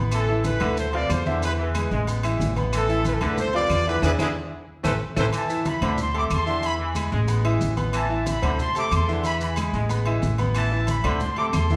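Driving and fiery, this short salsa cut from a longer piece races along at 184 BPM in a straight 4/4, rooted in A harmonic minor and cycling through chords such as Asus2, Dm7 and E. A mellow trumpet section carries the melody up front, punchy and tight with light vibrato and a smooth top, while a bright, vintage-toned trombone section sits in the background on a second line. A brilliant grand piano plays accompaniment with long sustain and audible action noise, and a woody, growly upright bass, plucked and thumpy on steel strings, stands close in the mix. The percussion bed blends low-tuned congas with thin, bright skins, ringing agogo bells and timbales, very quiet saturated claves, and grainy maracas. A band accent lands between 4.0 and 5.3 seconds with a drum fill starting at 4.4 seconds, and the whole ensemble is heard from further back in a large studio with a wet reverb.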